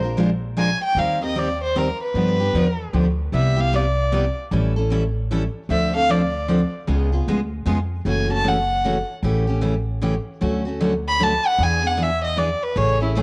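A lightly reverberant home cassette recording with a homespun tape character catches this fiery, virtuosic snippet of acoustic string swing in a lilting triple metre. A close, reedy, nasal violin with an airy bow and gut-string tone takes the lead from 0.6 s in a period-style solo, while a bright, full-bodied picked dreadnought guitar picks out the chords and a woody, thumpy pizzicato upright bass anchors the low end throughout. The harmony moves restlessly through dominant sevenths before settling into a minor-key passage at 8.1 s.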